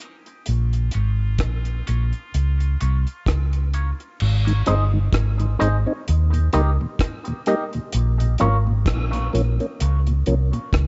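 Laid-back and hazy, this dub reggae excerpt drifts at 64 BPM with a swung sixteenth feel, opening on a break with a filter sweep as a bright, twangy envelope-filtered guitar sounds dub echo through the first 8.6 seconds and a faint horn section with octave doubling and vibrato floats in the background until 3.7 seconds. A dark, round, foam-muted fingered bass sits up front over a dry, tight reggae kit of kick, rim click, hi-hat and crash, while a mellow tonewheel organ with key click and slow rotary speaker enters at 4.5 seconds. The chords move from Bbm through Ab and Eb back to Bbm, and the echo-heavy mix is soaked in studio reverb with its top end rolled off.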